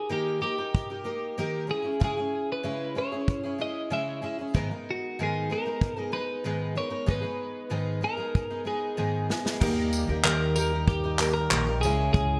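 Bright 1980s-style digital production with light small-room reverb frames this tender, reflective acoustic pop excerpt in G# minor at 95 BPM, where a twangy twelve-string electric guitar carries the melody through spring reverb and delay over a shimmering, fingerpicked twelve-string acoustic guitar with subtle chorus, an up-front unplugged drum kit played with bundle sticks joins at 0.7 seconds with handclaps and tambourine and plays a fill at 9.0 seconds, and at 9.6 seconds a woody pizzicato upright bass arrives alongside a very quiet percussive tonewheel organ turning on a slow rotary speaker.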